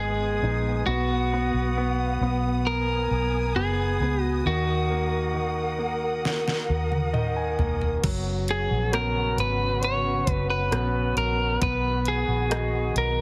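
A slightly broken-up, lightly driven electric lead guitar carries the melody up front in this longing, melancholic pop ballad excerpt, moving slowly at 67 BPM in a straight 4/4. Beneath it, a bright concert grand piano with brilliant highs, deep bass and long sustain plays the accompaniment, while a dark, lush studio string section holds bowed, vibrato-rich chords with a smooth top. A round, foam-muted vintage fingered bass sits up front, anchoring the harmony as it moves from G#m to B and D#m, then to F#sus4 and back to B. The drum kit arrives at 6.3 seconds with a fill, joined by a piano fill, leading into a new section at 8.0 seconds, where the layered, electronic-leaning, overdriven kit brings a knocking kick and a deep snare with hi-hat, rim clicks, toms and crash cymbal. The mix has a light digital reverb and a heavily compressed, radio-ready sound.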